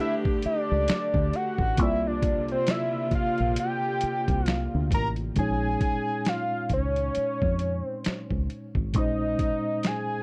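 A dry, close, 1970s-style studio sound frames this introspective, smooth neo-soul R&B excerpt at 67 BPM, its 16ths swung over a gritty, compressed, pitched-down boom bap drum kit with a thumpy kick and medium-tuned snare. Up front, a fat, nasal analog lead with detuned sawtooth and square tones, sub octave and vibrato carries the melody over a mellow, clean tine electric piano and a dark, round, foam-muted fingered bass moving through A9sus4 and C9sus4. A soft-attack bowed string section adds intimate sustained chords until 5.3 seconds, just before the harmony shifts to Bbm11 at 5.4 seconds.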